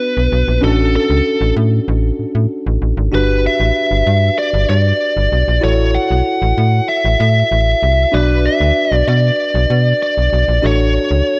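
A straight 4/4 pulse at 96 BPM drives this nostalgic, urgent 1980s-style pop passage in B minor, where a snappy, metallic FM bass sits up front beneath a clean, bell-like tine electric piano while a bright, overdriven, picked lead guitar carries the melody over chords moving from Bm through Dmaj7/A, Gmaj7 and F#m7/A, set in light digital reverb with a dark production.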